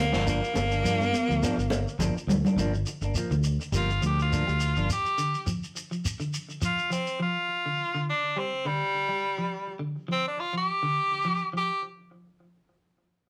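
Hypnotic and defiant, this afrobeat fragment cut from a longer piece moves at 104 BPM in 4/4 with a swung sixteenth-note feel, sitting on a single G minor seventh chord. An edgy, forceful tenor saxophone carries the melody up front as a solo for the full 11.8 seconds, its vibrato punchy and present. A round, fingered electric bass anchors the low end until about 4.9 seconds, when it drops out along with the dark, clean stabs of a semi-hollow guitar. Underneath, a second electric guitar at the edge of break-up picks arpeggios through an analog delay, while a grainy, mellow shekere sits close and dry and high-tuned congas with hard hands add a thin, vintage snap early on, and a drum fill arrives from 2.0 to 2.6 seconds. The rough rehearsal-room recording carries saturation and a moderate studio reverb, giving the groove a raw, lived-in feel.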